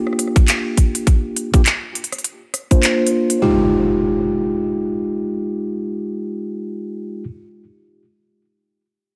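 A swung, sixteenth-based groove in four drives this playful, swaggering glitch hop fragment, with a tight, up-front electronic kick and a crisp kit of hi-hats, handclaps and rim clicks that share a tape-kissed, layered sheen and a touch of studio reverb. Over them, a mellow tine electric piano plays stabs through vintage 12-bit sampler grit, pumping against the sidechain and colored by a low-pass filter and digital delay, its clean tone heard as if through built-in speakers. A filter sweep shapes the keys over a Gm7 chord until 3.4 seconds, when the harmony moves to Fm9 and a new section begins. The kick drops out at 2.8 seconds and the kit at 3.4, leaving the electric piano alongside a faint electronic impact effect for the remainder. Light reverb gives the whole clip a gentle sense of space.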